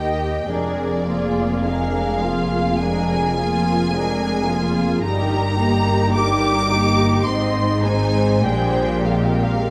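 Set in a dark, reverberant recital hall, this slow, lyrical string-orchestra excerpt from a romantic classical movement drifts in rubato at 42-55 BPM, with smooth first violins singing the high melody over focused, lush second violins, woody violas with light vibrato, rich cellos in the background and distant double basses beneath chords moving from Bb7/F through Eb/G and Ab to Bb13.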